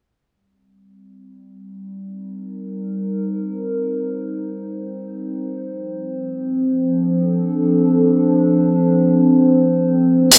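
Spacious and meditative, this ambient dub fragment drifts in free time in C dorian, tuned slightly low to A4 = 438 Hz. A warbly, tape-like pad carries sustained chords from 1.6 s, its detuned square and triangle tones blooming slowly with a nostalgic, lo-fi darkness and a chorused shimmer inside its own built-in reverb. The harmony moves from Cm7 to Dm7 at 5.3 s while the pad gradually fades in, sitting up front in the blend. Just at the close, at 10.3 s, an acoustic hi-hat cuts through briefly with a natural, studio-room presence. The whole mix is soaked in a lush hall reverb, giving this piece, cut from a longer work, a dreamy quality.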